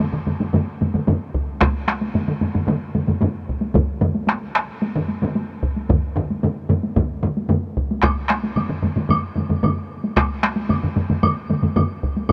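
A huge ambient reverb hangs over this driving, powerful excerpt of Japanese traditional taiko drum ensemble music, moving at a straight 112 BPM in 4/4. Two taiko ensemble parts, one struck with hard sticks and close up front, the other heavy, compressed and saturated, play alongside a compressed, saturated solo taiko drum, while a second close, dry solo taiko enters up front at 1.3 s. A woody woodblock in a small room joins at 8.0 s and runs to the cut at 12.3 s.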